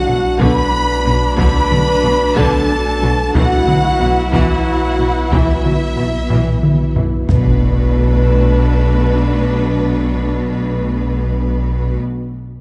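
A brooding, futuristic hybrid film-score excerpt in B minor at 61 BPM in 6/8 opens on lush bowed strings, with violin sections carrying the melody and a focused second line over a smooth viola bed, as mellow, distant French horns, clear background trombones, a swarming, warbling drone and a deep, punchy sub bass hold sustained Bm7 and Esus2/B harmony. A rich cello and double bass foundation joins almost at once, while a tight, detuned sawtooth synth sequence arpeggiates very quietly and hard-stick taiko drums echo from a large room until a drum fill leads into a huge, bright impact at 7.3 seconds. The dark production sits in a wet concert hall reverb.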